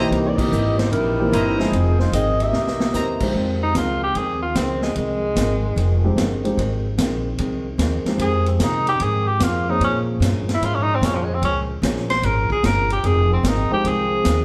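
Big band swing in a brassy, sultry mood, cut from a longer piece, where a mellow saxophone section carries the melody over clear trumpet section stabs, woody pizzicato upright bass, a dark, clean hollow-body archtop guitar, an intimate grand piano with audible action noise and a roomy drum kit with dark cymbals and a punchy kick, punctuated by a band accent at 0.3 seconds, until a drum fill gives way to a vintage-toned tenor saxophone solo with vibrato from 3.3 seconds, the ensemble set back in a large, reverberant studio.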